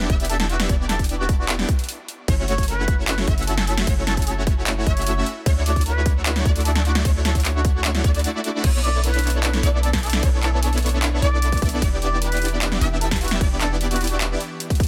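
A breathy, plunger-muted trumpet carries a distant, intimate jazz-style melody through this dreamy, emotional future bass drop at 151 BPM in half-time B minor, set over huge detuned supersaw chords, a punchy background pluck arpeggio with digital delay, a deep, boomy 808-style bass, all pumping with sidechain, plus a hard-clipped electronic kick, an overdriven dubstep kit with a deep snare and bright hats, and an airy pad that enters softly at 9.0 s, all in a dense, heavily limited modern master.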